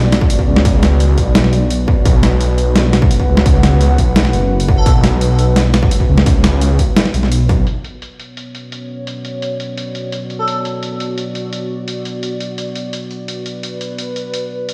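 A moody, wave-folded analog pad with sampler grit and sidechain pumping opens this tense, dark half-time drum and bass excerpt at 171 BPM in B minor, joined at once by a deep, rumbling detuned saw bass and a distorted, tape-warm electronic kick, both gone by 7.7 seconds, while a gritty, pitched-down boom bap sampler kit with an overdriven high-tuned snare carries on to the end and an airy, dreamy lead with chorus, cassette tape character and delay touches a single brief note at 4.8 and again at 10.4 seconds, the whole mix heard through stone-room reverb as if played on a big sound system in a bare room.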